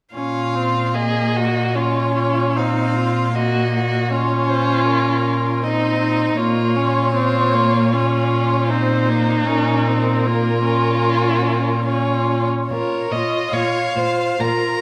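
Pliant rubato in a steady four-beat metre gives this slow, romantic string quartet fragment an elegiac, yearning sway. A single violin carries the melody in a smooth, even voice full of vibrato. A second violin, warm and expressive, adds its own line with portamento, sounding set back yet still present. The viola, heard close with a soft attack and sliding, singing vibrato, fills in the accompaniment beneath them. The cello holds a low bass note in a rich, steady tone until 14.5 s. A lush scoring-stage reverb wraps the quartet, and a new passage begins at 12.7 s, just before the fragment breaks off.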